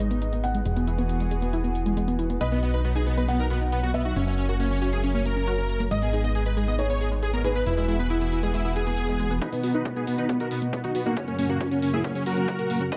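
Uplifting and euphoric, this uplifting trance fragment in B major runs at 137 BPM in a straight 4/4, with a lush, airy pad holding sustained chords and a tight, driving sequenced synth spinning filter-swept arpeggios over metallic electronic hi-hats, while a round FM bass sits up front and a soft, felt-muted upright piano adds a delayed second line in the background until 9.3 seconds. A huge, detuned supersaw carries the melody from 2.4 seconds through cassette-tape colour, a low-pass filter and digital delay, and a brief electronic swell leads into a build-up at 9.4 seconds where a punchy layered kick enters and the supersaw's filter sweeps. The chords cycle through G#m, Eadd9, B and F#, with sidechain pumping on the pad, arpeggio, bass and lead, all set in a dark production with light reverb.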